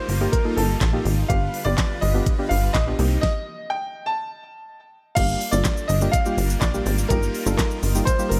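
A clear concert grand piano opens this energetic, confident dance-pop excerpt, carrying the melody with an open, short-sustaining tone over a deep, mellow chord stab that adds a soft, nasal, dark pluck with chorus and sidechain pumping. Just behind them, huge, lush supersaw chords hold sustained harmony with a bright, detuned shimmer, pumping in time as well. From 0.1 seconds a punchy, funky analog bass with a wave-folded filter pluck and a pop drum kit with a knocking kick, fat snare, crisp hats, handclaps, shaker and crash drive the straight groove, both sitting up front. A stop from 3.2 to 5.2 seconds breaks the momentum before the opening section returns, moving through chords such as G7, Cm7 and Gm7. The mix is dry and close, with the tape-warm drums and punchy bass giving the excerpt its confident drive.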